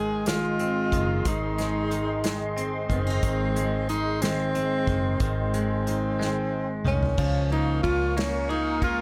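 Lightly reverberant, this short cut from a romantic, swaying six-eight pop ballad at 61 BPM puts a mellow, breathy tenor saxophone up front with light vibrato and scooped notes over a full-bodied, double-tracked steel-string acoustic guitar with audible finger squeak, a twangy clean electric guitar playing arpeggios through tape echo in the background, an evolving detuned pad with chorus and plate reverb, and a dark, round, foam-muted electric bass, while a small-room acoustic drum kit played with bundle sticks enters at 0.3 seconds and plays a fill from 6.2 seconds before the harmony moves from Ab to Db6 at 7.2 seconds.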